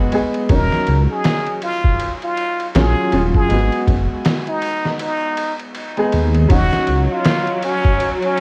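A clear, woody upright piano with tremolo and tape echo opens this smoky, cinematic trip hop excerpt in Eb minor at a swung 80 BPM, joined by a gritty, pitched-down sampler-style drum kit with a thumpy kick, a brilliant plunger-muted trumpet playing a forceful, jazz-style solo melody with echo, and a deep, rumbling detuned saw bass up front; the kick drops out from 5.0 to 6.5 seconds, and at 6.5 seconds a lush, bright symphonic string section and a very quiet, dreamy reversed granular texture arrive, all heard through worn, warbling cassette tape with vinyl crackle and light studio ambience.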